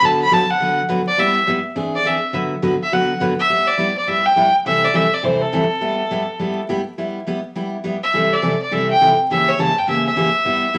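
Country music with a cheerful, swinging lilt at a brisk 207 BPM in G major, the fiddle taking a solo over the first 3.5 seconds before the tune moves into a new section. A clear, nasal, earthy fiddle carries the melody up front with light vibrato and a smooth top, while a bright, full-bodied steel-string guitar picks the accompaniment through sixth chords, an augmented seventh and a closing diminished seventh, its fresh strings letting a little finger squeak through. A wet studio reverb and a layer of vinyl crackle give this short cut from a longer piece an old-record charm.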